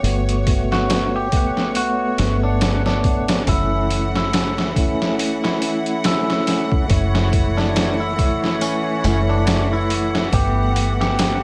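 A sampler-style trip hop drum kit sits up front in this dark, brooding excerpt, its pitched-down, muffled sound pairing a thumpy kick with a medium-tuned snare and hi-hat, compressed, overdriven and re-recorded in a small room. Beneath it, a deep dub fingered electric bass stays low, round and punchy, its foam-muted tone thickened by tube saturation. A fat tonewheel organ supplies the accompaniment, lightly overdriven with key click, chorus vibrato, a slow rotary speaker, harmonic tremolo and tape echo, while a clear studio string section holds bowed chords with light vibrato and an earthy bite. From 0.7 s a clean, picked electric guitar carries the melody with a twangy, scooped tone and its own tape echo. The harmony moves from Gmaj7 to F#m7 at 3.5 s and returns to Gmaj7 at 10.3 s, all over a lazy swung groove and a layer of vinyl crackle.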